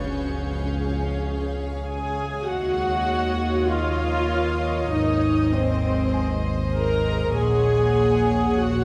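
This cinematic suspense cue, cut from a longer piece, sets a tense, uneasy mood in a straight 4/4 pulse. A dark studio violin section carries the melody with light vibrato and a smooth, sul tasto top, while a pure, floating symphonic violin section traces a second line beneath it and an intimate viola section fills the accompaniment. Bowed double basses and background cellos hold the low end, with a mellow French horn section sustaining chords behind them. A metallic, inharmonic FM drone with chorus and its own reverb hums low and eerie, and a granular cloud pad adds blurred, evolving, detuned sustained chords high above, bright yet distant. A very quiet, boxy concert grand adds high texture, and a warm, high violin texture appears only until 2.1 seconds. The harmony moves from C# through Ebm7 and Ab to Gbadd9/Bb, all set in a moderate scoring-stage reverb with a dark, warm production.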